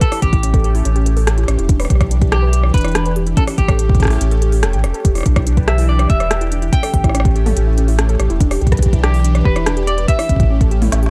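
A bright, clean semi-hollow electric guitar carries the melody through lush chorus and tape echo, over a warbling, lo-fi pluck that spins detuned arpeggios and a swirling phased analog pad holding sustained chords with sidechain pumping. Underneath, a round sine sub bass enters at 0.2 seconds and sits up front beside a deep electronic kick, while an organic electronic kit adds a woody snare, smooth hats, rim clicks and toms, both kits tape-warm and re-recorded in a small room. This glitchy, cerebral IDM fragment alternates between A7 and Em7 in a dark, dry production, with a drum fill at 10.9 seconds.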